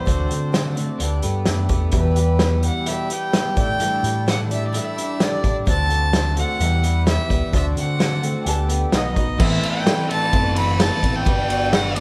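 A straight 4/4 folk rock and heartland rock groove, reflective and dusty, rides on an up-front vintage drum kit with dark cymbals and a punchy kick and a round, amped fingered bass, while a biting, nasal fiddle with light vibrato carries the melody over a shimmering, octave-doubled twelve-string acoustic guitar, a bright, compressed twelve-string electric guitar riff, a breathing harmonium holding chords in the background, a worn, slightly out-of-tune reed electric piano entering very quietly at 1.9 s, and a brilliant, woody upright piano adding a brief second line at 8.4 s, with the band heard playing live in one room under moderate studio reverb.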